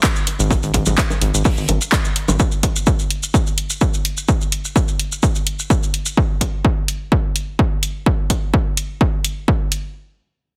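A punchy, overdriven electronic kick and an analog drum machine's handclaps and hi-hat open this quirky, hypnotic minimal techno excerpt, sitting up front with a faint, dark soul kit hi-hat and snare and close, grainy maracas that carry on until 6.1 seconds. A rubbery, hollow square bass with a resonant filter pluck pumps with sidechain compression from 0.4 seconds, while overdriven bongos and congas with digital delay join briefly at 0.5 seconds. The whole recording is squeezed into a heavily compressed, radio-like digital ambience.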